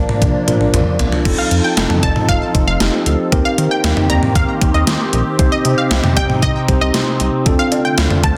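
A gated 80s digital drum machine sits up front in this nocturnal, driving synth-pop excerpt at 116 BPM, its thumpy kick, overdriven gated-reverb snare, cowbell, hi-hat, crash and toms opening with a fill that runs from 0.2 to 1.3 seconds. Beneath it, a glossy, nasal chorused synth bass and a swirling, detuned phased analog pad hold the harmony with a clean tine electric piano, moving from Bb through F7, Eb6 and Cm to Dm7. At 1.4 seconds a lush, bright unison pluck enters as a second line, coloured by phaser and digital delay, all set in a moderate digital room and a dense, heavily limited master.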